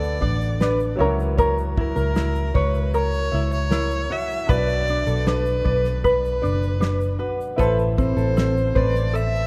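Easy-going and heartfelt, this short acoustic pop excerpt moves at an unhurried 77 BPM in a straight 4/4, with the harmony shifting from D through F#7/C# and Bm to Am. A rich, focused violin carries the melody with a bowed vibrato and a slightly boxy edge, backed by a mellow, fingerpicked ukulele and a clear baby grand piano that sits in the background with its action noise audible. From 0.2 to 8.9 seconds a fingerpicked plugged-in steel-string acoustic guitar adds woody, full-bodied arpeggios from its place behind the other parts, its old strings lending a worn character. Underneath, a vintage foam-muted electric bass is dark, round and punchy, sitting up front, while a cloth-damped drum kit supplies a thuddy tight kick, fat snare and shaker with a rolled-off top. The whole piece is bathed in a moderate cathedral reverb, giving it the spacious air of a church or concert hall.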